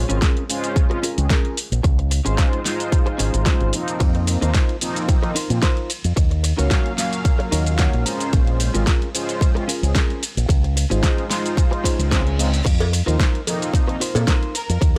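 A lightly swung groove drives this sensual, cosmic nu-disco excerpt, as a punchy, up-front electronic kick and a layered pop kit with a fat snare anchor a direct, envelope-filtered fingered bass, while mellow, detuned synth brass with chorus and analog delay and a bright, clean, compressed picked guitar riff with a fill at 7.3 seconds ride over minor-seventh and suspended chords, a background reverse cymbal at 12.0 seconds gives way to a saturated cowbell, and a distant, smooth violin section with vintage sampler grit touches in at 14.6 seconds, all in a dry, gritty room.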